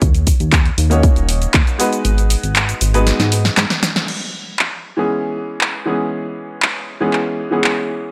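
Nu-disco at 118 BPM with a cosmic, sensual mood, this short cut opens on a dark, glossy chorused synth bass with saturated pulse-wave grit, a punchy electronic kick that stops at 1.6 seconds, and a house drum kit of crash, handclaps, hi-hat, shaker and snare, while a bright, brilliant baby grand piano enters at 0.9 seconds with sidechain pumping and analog delay, moving from D#m7 and G#m7 through a drum fill and band accent into an E6 section, all in a dry, gritty recording with light digital ambience.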